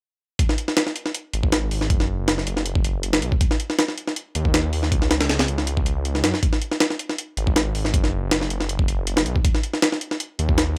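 Frenetic and atmospheric, this short drum and bass excerpt cut from a longer jungle piece runs at 159 BPM in a straight 4/4, with a compressed, pitched-up sampler-style kit of hi-hat, thumpy kick and medium-tuned snare sitting up front in a small room ambience from 0.4 seconds. A thick, menacing detuned saw bass joins at 1.3 seconds, its beating sawtooth tone, sine weight, fast attack and sustained notes ranging from F#1 to F#2. The sound is dry and gritty with little reverb, and the drums carry a tape-warm character.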